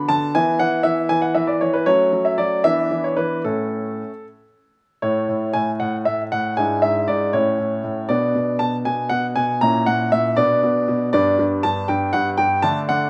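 Classical-period piano sonatina in A major, graceful and playful at 78 BPM in a straight 6/8, played by a solo baby grand whose clear, natural tone and long sustain sit up front across a range from G2 to A#5, framed by a moderate large-studio reverb, moving from an opening phrase on F#m and A into a second idea at 5.0 s that passes through E7/G#, Bm and A#dim before landing on G as this cut from a longer piece closes at 13.1 s.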